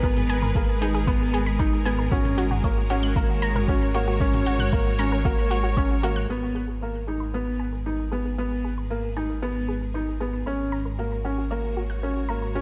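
A straight 4/4 pulse at 115 BPM opens this hypnotic, cinematic stretch of piano and strings electronica in G# minor, driven by a deep, overdriven electronic kick and a layered deep house kit of hi-hat and toms, both with the boxy colour of a small room. The two drum parts drop out at 5.9 and 6.1 seconds, just as the music moves into its second section at 6.3 seconds. Throughout, a soft, felt-muted upright piano sits up front with an intimate riff touched by delay. Beneath it, a dark, detuned sawtooth bass holds a rumbling G#1 under the G#madd9 and F#/G# chords. A lush, bowed symphonic string section sustains those chords with smooth vibrato, and a nasal, wave-folded analog pluck spins bright arpeggios through chorus, cassette tape colour and delay. In the second section the strings fade in and a filter sweep runs across the pluck, while sidechain pumping breathes through the strings, pluck and bass inside a light digital ambience.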